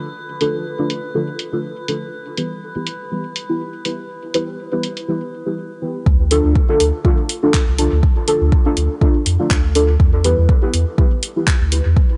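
Meditative and deep, this dub techno excerpt at 122 BPM in D dorian opens with soft, detuned chord stabs drenched in chorus, phaser and dub echo over an eerie, metallic drone that ends at 5.1 seconds, while a filtered deep house kit of handclaps and hi-hat adds overdriven grit, until at 6.1 seconds a round sine sub bass with tube saturation and an up-front overdriven kick arrive as a filter sweeps the stabs, with stabs and bass pumping under light reverb.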